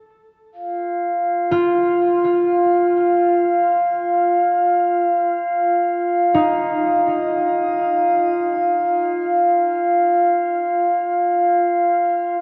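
Ambient music in free time, serene and gently warm, this brief excerpt floats on a glassy, ethereal glass harmonica texture that enters at 0.5 seconds, sitting up front with a slow attack and smooth, pure tone through a shimmer reverb. A fingerpicked concert harp rings out arpeggios from 1.5 to 9.0 seconds, its acoustic sound trailed by tape echo and shimmer, over an Ebsus2 harmony that gives way to an unharmonized stretch at 8.3 seconds. Everything is bathed in a huge, wet ambient reverb and the worn, warbling character of old cassette tape, with dulled highs and a drifting pitch.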